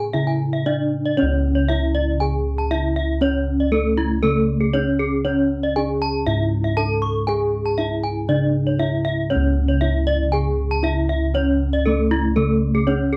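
Round, smooth bronze gongs sit up front in this brilliant, shimmering passage of Balinese gamelan, carrying the bass from deep C#2 up to A4 with a dark, beating tone. Above them, a bronze metallophone struck with a wooden mallet plays the melody between A3 and A4, its ringing notes pulsing with the shimmering beats of paired tuning. A second metallophone, played with a horn mallet, adds bright, airy arpeggios from E4 up to C#6 and also stands close in the mix. The music moves at 118 BPM in a straight 4/4 in C# pelog, with all three parts sounding together from the start, and the music shifts into a new section at 1.2 seconds that continues to the cut at 13.2 seconds. Light reverb, a dark, warm production and a faint mains hum frame this fragment cut from a longer piece.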